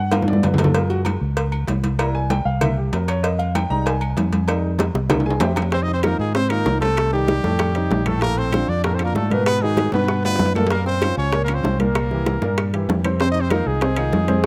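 A straight, driving four-beat Afro-Cuban jazz groove opens this sophisticated clip. Soft-handed congas ring in the background, tight, high-tuned bongos and cowbell sit close and dry, and metal-shelled timbales and agogo bells add their own shimmer, while very quiet, woody, saturated claves join at 1.1 seconds. An up-front, dark, round fingered electric bass anchors the low end as a natural-sounding upright piano moves through rich jazz changes and takes a featured turn over the first 5.7 seconds, with short drum fills marking the phrase turns. At 5.7 seconds a bright, punchy, forceful trumpet takes the melody, while a breathy tenor saxophone with light vibrato and scooped notes plays a second line in the background. Light reverb and a small-room ambience give it the rough feel of a home demo cut from a longer piece.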